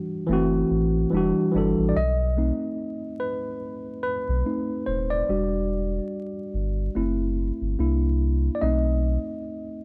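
A worn, slightly out-of-tune tine electric piano opens this melancholic, nostalgic lo-fi hip hop piece, its mellow tone softened by a low-pass filter and sitting up front, with a round, sine-like sub bass entering at 0.3 seconds to add a deep foundation with a fast attack and sustained notes. At 72 BPM in 4/4 with a 58% swing on the sixteenths, and tuned to A4 = 445 Hz, the groove feels unhurried and gently lopsided. The harmony drifts through jazzy chords such as F#m7b5, Em9, B7b9 and C9, and from 2.0 seconds the electric piano steps forward to take a solo over the bass. The sub bass drops out at 9.2 seconds, leaving the electric piano briefly on its own before this passage, cut from a longer piece, ends. Light reverb and a layer of vinyl crackle give the whole recording a dusty, intimate character.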